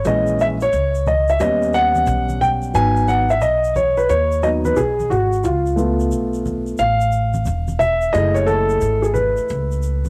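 A dark, intimate grand piano takes a smoky solo from the first moment, its vintage cassette-tape tone and audible action noise sitting up front over a swung jazz-hop groove. Beneath it, a woody pizzicato upright bass with steel strings holds the low end, while bright, close tube shaker and congas played with soft hands sit low in the mix. The mellow harmony moves through A#m7b5, D#7alt, G#m7 and C#7alt before settling on F#m9 at 8.1 seconds, all in a small, lightly reverberant room with a homemade cassette character, in this fragment cut from a longer piece.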